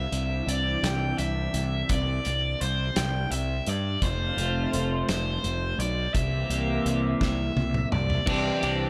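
A bright, overdriven electric guitar melody with analog delay rides up front over a double-tracked riff guitar at the edge of break-up and a punchy, fuzz-soaked picked bass in this upbeat yet wistful indie rock fragment in 6/8, while a loose acoustic drum kit with dark cymbals and a rolled-off top pumps in a small room, adding a fill from 7.2 to 8.3 seconds as the chords move from Cadd9 through F and C7 back to Cadd9.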